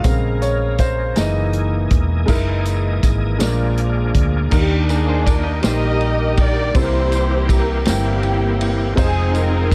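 A slow 6/8 pulse at 54 BPM, counted in dotted quarters with a straight feel, carries this reverent, uplifting gospel excerpt, which settles into Eb major from 4.5 s. A clear, vintage grand piano plays accompaniment from the start over a dark, roomy soul drum kit with a tight kick and rolled-off cymbals, a round hollow-body electric bass placed up front, and a bright tonewheel organ holding full, lightly overdriven chords through a slow rotary speaker with chorus vibrato in the background. A jingly tambourine sits close and dry behind them, and at 2.3 s a very quiet, mellow French horn section adds soft-attack sustained chords as the harmony moves from Bbm9 and Gb13 toward Bb7. At 4.5 s a lush, woody string section takes the melody up front, and from 4.9 s a compressed, picked clean electric guitar with analog chorus briefly adds a second line in the background. The chords pass through Ebmaj7, C7 and Fm7 in a small room ambience.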